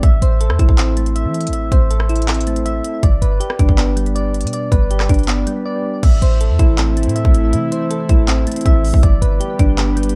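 Soft, round electric-piano-like synth keys play arpeggios through chorus, tremolo and digital delay from the start, over a deep, boomy 808-style bass and an up-front trap kit with a hard-clipped kick, crisp hi-hats, handclaps, rim clicks and crash cymbal, giving this half-time hip hop and trap cut a melancholic yet hard-hitting mood. After a brief break at 5.7 seconds, an airy, breathy pad with a detuned, ring-modulated edge enters at 6.0 seconds, holding sustained chords beneath the keys. The production is dark with light reverb, and the passage is cut from a longer piece.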